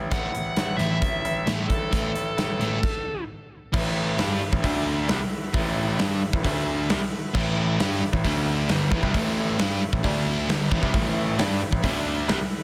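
Dense and heavily limited with a light reverb, this anthemic, powerful hard rock excerpt at 133 BPM in 4/4 opens with a dark, smooth lead guitar melody with overdrive and digital delay up front, over sludgy distorted guitar riffs, a punchy big-room drum kit and a bright grand piano playing the bass line, with audible action noise. After a stop at 2.8 seconds, a crunchy, double-tracked overdriven guitar riff enters at 3.7 seconds as the harmony alternates between A5 and D5. A very quiet, gritty tonewheel organ with slow rotary speaker sustains thick chords underneath throughout.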